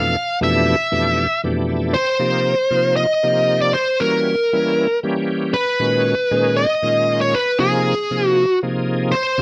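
A smooth, overdriven electric lead guitar with slapback echo carries a soaring melody up front while a bright, shouting tonewheel organ, lightly overdriven through a slow rotary speaker with chorus vibrato, accompanies it up front and slips in a fill at 1.4 seconds, in this slick jazz fragment cut from a longer piece, moving at a brisk 234 BPM in 7/8 through rich chords from Fmaj9 to Bmaj9 and landing on Ab, all captured in a dry, close 1970s-style studio sound with light reverb.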